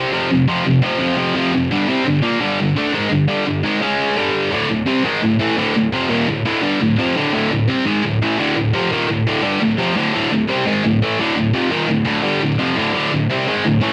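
Epic and heavy, this metal excerpt at 171 BPM in D phrygian features a lone high-gain electric guitar, bright, picked and double-tracked up front, moving through F5, G5 and C#5 power chords before settling onto D minor at 4.5 seconds, with cassette-tape grit and a moderate studio reverb giving the home recording a raw, roomy edge.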